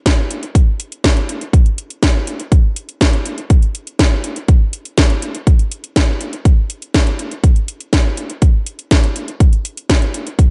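From 0.1 s, a punchy, tape-warm electronic kick drum sits up front with a house drum kit of cracking snare and metallic hi-hats under gated reverb, driving this short, nostalgic, danceable italo disco cut at 122 BPM in a straight 4/4 through to 10.5 s, with a close, dry room and a dulled top end.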